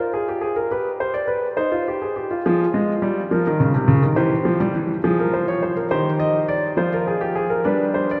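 A warm concert grand piano with a deep bass sits up front from the first moment, carrying a serious, driving baroque-style three-part fugue in a straight 6/8 through shifting minor-key harmonies, its notes blooming into the long, echoing wash of a vast cathedral for this 8.2-second cut from a longer piece.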